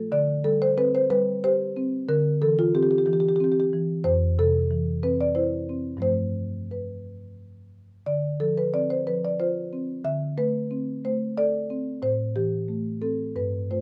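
A dark, warm production with light reverb frames this short passage, cut from a longer contemporary classical piece for solo marimba. The marimba, played with soft mallets on padauk bars, sits up front with a woody, mellow, round tone, spanning F2 to E5 from the opening to 13.8 seconds. The music moves in a flowing triple metre with a rubato feel, giving it a hypnotic quality. Its harmony drifts through a chain of chords: D7sus4, Cadd9/D, Fmaj7, G9, Dm7, Csus2/D and finally Am7 at 12.0 seconds. The result is a single, continuous section that feels hypnotic and flowing.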